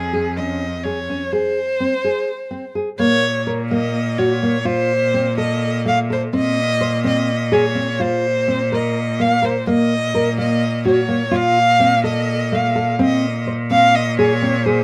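A dark, close bowed violin and a clear, smooth cello open this urgent, restless contemporary chamber piece in 7/8, with a fingerpicked nylon-string guitar joining at 0.1 s to weave deep classical arpeggios alongside them. The violin carries the expressive melody with soft attacks, vibrato and portamento, while the even cello holds a low bass line, both bowed by single players and placed up front. Shifting slash chords color the harmony as the music moves into a new section at 3.0 s, all set in a moderate studio reverb in this piece cut from a longer work.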